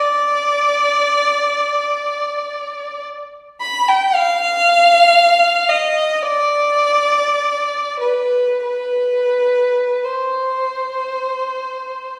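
Yearning and mournful, this classical excerpt for unaccompanied violin unfolds in free time, tuned to A4 = 438 Hz. A single bowed violin carries the whole 12.2 seconds alone, its rich, smooth and even tone shaded with vibrato as it moves between B4 and B5. The violin sits up front yet sounds distant, bathed in the wet reverb of a recital hall with a 1.4-second decay that suggests a church or concert hall.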